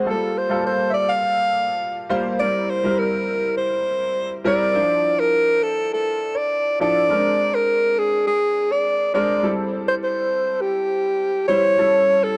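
A dark, warm production with light reverb frames this short excerpt of urban, breezy pop at 102 BPM in a straight 4/4. A clear, natural grand piano carries the accompaniment through lush chords such as Gm9, Dm9 and Bb9, softened by an analog chorus and sitting beneath the lead. Up front and close-miked, a breathy alto saxophone sings the melody from 0.1 seconds in an intimate jazz style, with whispered tone, soft attacks, scooped notes and gentle vibrato, before the harmony settles on A7 at 11.8 seconds.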